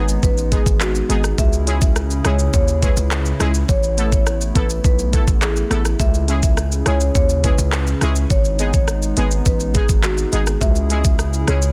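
A dense, heavily limited modern mix in a digital ambience carries this bouncy, tough dancehall excerpt, with a gritty 12-bit electronic pop kit of knocking kick, crisp hats, handclaps, rim clicks and shaker (its snare softly clipped) sitting up front beside a punchy, heavy 808-style bass. A dark, smooth marimba with medium mallets carries the melody through delay, while bright, detuned sawtooth brass stabs with chorus add accompaniment. Beneath them, a hollow, flute-like pad holds sustained minor-key chords with chorus and sidechain pumping, and close, ringing maracas sit in the background.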